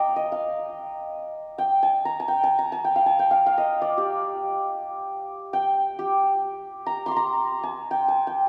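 Unfolding in free time, this brief fragment of a Persian modal piece in G dastgah shur has a hypnotic, melancholic mood. A solo acoustic santur plays up front across its range from G4 to D6, its hammered strings shimmering and ringing through a wet church reverb, with the opening material returning at 6.6 s before the clip ends at 8.5 s.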